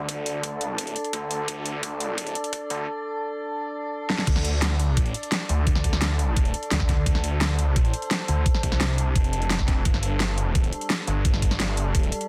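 Dense, heavily limited and nearly dry, this futuristic, mechanical passage of dark technical drum and bass builds with drum fills until a drop at 4.3 seconds, pairing an eerie, nasal FM drone of sustained chords with a growling, detuned distorted saw bass, both pumping against the sidechain, while a layered dubstep kit of huge snare, metallic hi-hats and crash cymbal and a knocking electronic kick re-recorded in a small room sit up front beside the bass.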